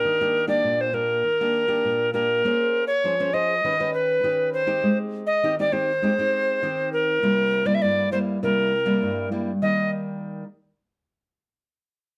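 Samba with a joyful, festive spirit, this short excerpt is cut from a longer piece and moves at a straight-feeling pace. An alto recorder carries the melody up front, its wooden, airy, warm tone marked by vibrato, tonguing and a chiff at the start of notes. Beneath it, a fingerpicked nylon-string guitar supplies classical-style accompaniment, also up front, with a bright, fresh-stringed sparkle. The harmony moves through Ebmaj7, Bbm9, Ebaug7, Abmaj7 and C7 before settling on Eb at 9.6 seconds, where a brief new section begins. The recorder stops at 9.9 seconds and the guitar at 10.4 seconds, all within a moderate studio reverb.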